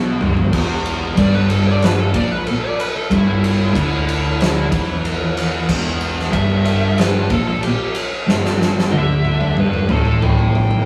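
A pair of thick fuzz guitars picking a riff and a growly, overdriven fingered bass open this heavy, sludgy stoner and doom metal excerpt as a G5 chord gives way to E minor, with one guitar kept very quiet, the other carrying extra distortion, and the bass sitting in the background. An oversized, low-tuned acoustic kit arrives at 0.2 seconds, up front and gritty, with a boomy kick, fat snare, dark cymbals and toms in a big, pumping room, and it plays a fill at the start and another from 8.3 seconds. From 1.2 seconds a compressed fuzz lead guitar with wah takes a solo, all captured in a rough rehearsal-room recording with light reverb.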